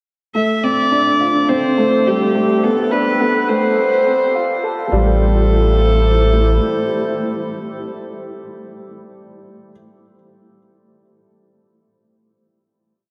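Cinematic and hypnotic, this short piano and strings electronica piece in A minor at 105 BPM opens at 0.3 seconds with a dark grand piano's arpeggiated six-step loop drifting against the bar. A deep, round sub bass plays off-beat notes, a granular cloud pad slowly shifts chords, and a pure, floating bowed viola, played sul tasto, spins a motif-based melody over the Dm7, Am7, Gadd9 and F build. The build ends at 4.9 seconds and settles onto a final Am7 chord lasting until 7.2 seconds, all bathed in a dreamy, cathedral-sized reverb.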